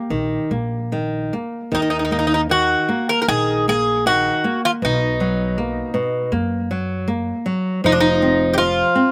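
Longing and passionate, this short fado-style ballad in Eb minor moves in a free, rubato 4/4 at roughly 72 to 82 BPM, and it is cut from a longer piece. A Greek bouzouki carries the melody up front, its picked, metallic double strings bright and partly octave-doubled. Close beside it, a flamenco guitar fingerpicks the accompaniment with a warm acoustic tone. An upright bass enters at 0.1 seconds, plucked low and woody, its steel strings lending a dark, growly edge, and it drops out at 8.8 seconds. The harmony moves from Eb5 through Bmaj7 at 4.8 seconds to F5 at 7.8 seconds. Captured outdoors with little reverb, the sound is dry.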